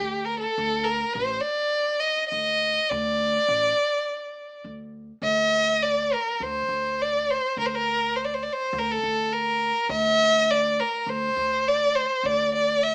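Heard through a small speaker in a snug room, this stately, warm Arabic fragment in 4/4 puts a rich, focused bowed violin up front, its vibrato-laden melody carrying a slapback echo, over a softer, woody pizzicato upright bass on gut strings, with a new section arriving at 5.2 seconds.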